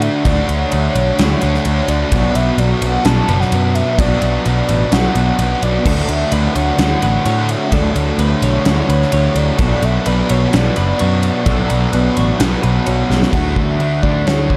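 Shoegaze and dream pop rock at 128 BPM in D major, hazy and wistful, where a soft, pure sine lead with chorus and tape echo sings over a lo-fi overdriven garage guitar riff with reverse reverb, a thick fuzz guitar drenched in lush chorus, a round foam-muted bass up front and a punchy gated 80s drum kit with a fat snare and bright cymbals, while a twangy clean electric guitar adds background arpeggios from 5.9 to 13.3 seconds, with a drum fill arriving at 13.1 seconds near their close, all inside a dark small-room production cycling through Dmaj7 and Bm chords.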